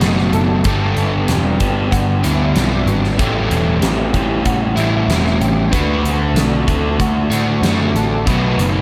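Lightly reverberant small-room sound frames this hazy, blissful shoegaze and dream pop rock excerpt at 94 BPM in A mixolydian, where two crunchy overdriven guitars play riffs, one up front with analog chorus and the other washed in reverse reverb, over a dark, round, foam-muted picked bass and a huge arena kit with a fat snare and punchy kick, while a bright, compressed clean guitar recorded direct sits in the background playing arpeggios through ensemble chorus and analog delay as the chords move from B7 through Gmaj7, A5 and D6.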